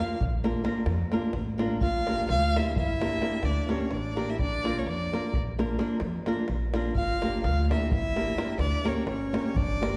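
This short cut from a longer Balkan wedding-band piece opens with violin, clarinet, fingerpicked flamenco guitar and davul all sounding together, with the upright bass joining at 0.2 seconds. Set in 11/8 at 256 BPM counted in eighths, with a straight feel in G dorian sharp4, the music carries a bittersweet yet virtuosic mood as the harmony moves between Bb and Gm. The violin takes the melody up front, its clear, smooth bowed tone shaded with vibrato, while the dark clarinet plays a second line in a classical style with a smooth top. The acoustic guitar, also up front, offers warm flamenco accompaniment, and the pizzicato upright bass gives a woody, thumpy bottom from its gut strings. The deep davul sounds as though caught in a small room, though the whole band is heard from further back in a reverberant concert hall.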